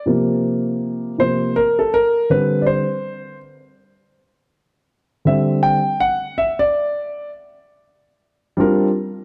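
The recording has a dark, warm sound, with a vintage concert grand piano set up front in a moderate echo-chamber reverb that lends a roomy tail. This hip hop fragment, cut from a longer piece, moves at 81 BPM in 4/4 with a 60% swing on the sixteenths, giving it a nocturnal, mellow mood. The piano plays alone from the start until 8.9 seconds, ranging from C3 to G5, and its tone is smooth with a deep bass and short sustain. The harmony rests on suspended chords, opening on C7sus4, moving to D7sus4 at 2.3 seconds, and reaching C9sus4 at 8.6 seconds. The overall production is dark and warm, suited to a late-night mood.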